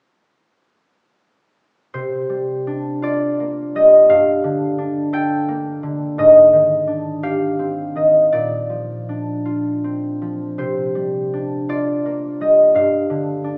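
A solo concert harp enters at 1.9 s with warm, ringing, thumb-plucked tones sitting up front, spanning G2 to G5 through a gentle, mysterious classical passage in C minor and a rubato 6/8 at 52-59 BPM, moving from C9sus4 through Gm9, Abmaj7#11 and Bbadd9, then returning to C9sus4 before settling on Gm7, all bathed in a wet recital hall reverb that sounds heard from further back in the room with a small speaker quality, in this excerpt cut from a longer piece.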